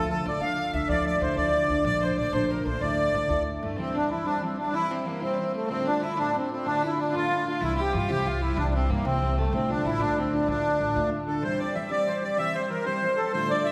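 A straight 6/8 lilt at 125 dotted-quarter beats per minute drives this wild Celtic folk passage, cut from a longer piece and moving between D minor colours and C major. A reedy, sweet accordion with light tremolo tuning carries the melody up front, while a clear, bowed fiddle with light vibrato traces a quieter second line, and a picked steel-string acoustic guitar on old strings gives woody, full-bodied accompaniment. A growly pizzicato upright bass plays from 0.0 to 3.8 seconds and again from 7.6 to 11.4 seconds, all set in a church or concert hall with a wet 2.2-second reverb tail.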